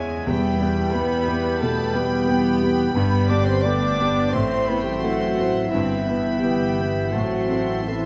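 A rubato 4/4 pulse carries this brooding, tragic orchestral passage, cut from a longer classical work, where an intimate concert grand piano with audible action noise and deep bass shares the melody with a clear, floating violin section bowed sul tasto. Around them, a clarinet, a background oboe with vibrato, a very quiet hollow flute and a second violin section with a smooth top weave second lines, while a vintage-toned bassoon and a rich, very quiet viola section accompany over a bass of cello and double bass sections in the background. From 0.3 seconds a mellow French horn section and a bright, very quiet trombone section hold sustained chords, timpani struck with hard mallets sound briefly until 1.2 seconds, and the whole sits in light reverb with close, detailed microphones and vinyl crackle.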